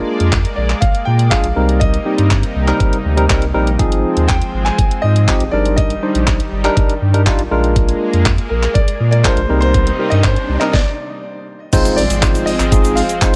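Dance-pop at 121 BPM with a carefree, upbeat mood, built on a barky, up-front tine electric piano and a thick, warbling detuned pad, both sidechain pumping alongside a round sine sub bass, while a layered electronic pop kit with a knocking kick, deep snare, handclaps, hi-hat, shaker and crash drives the straight 4/4 groove. A brilliant grand piano carries the melody with delay over chords moving through Bb7, Cm7, Ab6 and Ebmaj7/G, in a dry sound. A very quiet riser and impact arrives from 8.9 seconds, the band stops at 10.7 seconds, and on the impact at 11.7 seconds a grainy egg shaker enters briefly as this cut from a longer piece ends.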